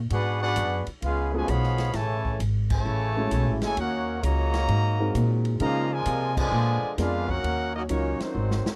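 A swinging, joyful big band swing excerpt in Db major at 131 BPM, where a woody pizzicato upright bass sits up front beneath a clear trumpet section carrying the melody with vibrato and a nasal, straight-muted trombone section on the second line. A swinging drum kit with a punchy kick and airy cymbals drives the band, while a polished grand piano with short sustain adds accompaniment from 1.3 seconds. The ensemble hits accents at 2.6 and 6.3 seconds before a drum fill closes the passage in a dry, close 1970s-style studio sound with light reverb.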